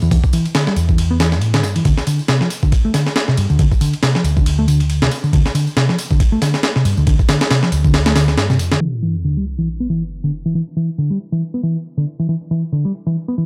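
A compressed, pitched-up sampler-style breakbeat kit with a thumpy kick, medium-tuned snare and ride cymbal drives this raw, energetic 138 BPM breakbeat piece in E minor with swung 16ths, alongside two dark, round hollow-body picked electric basses: a low bass line up front and a higher riff carrying 12-bit sampler grit and a low-pass filter, while an analog tambourine sits in the background; the kit and low bass stop near 8.8 seconds, when an electronic sub drop impact lands on an E7(no3) chord and a filter sweep runs through the riff until 13.5 seconds.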